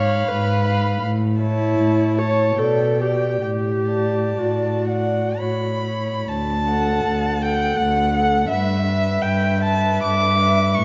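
In a rubato 3/4 that drifts between 57 and 89 BPM, this short cut from a slow, solemn and elegiac D major string quartet movement sets a rich, airy, sul tasto first violin melody above a dark, woody second violin line, an intimate close viola accompaniment and an up-front cello bass, all four bowed with vibrato in a moderate concert hall reverb, the harmony shifting from G#m6 toward D at 6.3 seconds as the second section begins.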